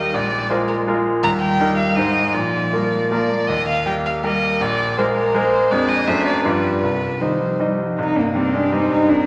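A quick, straight 3/4 pulse at 161 BPM drives this urgent, stormy classical-period movement for piano trio, cut from a longer piece, whose harmony circles Eb and Bb7 before turning to C minor at 5.7 s and landing on a bare C5 at 8.0 s. A bright, brilliant concert grand sits up front with deep bass and a polished presence, carrying the accompaniment beneath a warm, airy violin melody played sul tasto with light vibrato and a soft attack. A dark, smooth-topped cello adds an intimate second line, its sound close and bowed sul tasto with vibrato and a soft attack, all set in a wet concert hall reverb that gives the trio a rich, spacious glow.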